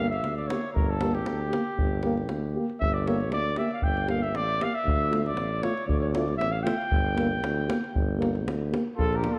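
A Balkan brass band groove in swung 2/4 opens with a mellow, vintage trumpet taking a bittersweet, virtuosic solo through tape echo over a dark trombone, warm euphonium, soft-attacked tuba and tight, close davul, all in a moderate recital-hall space, before a distant flugelhorn enters at 9.0 seconds just as the fragment cuts off.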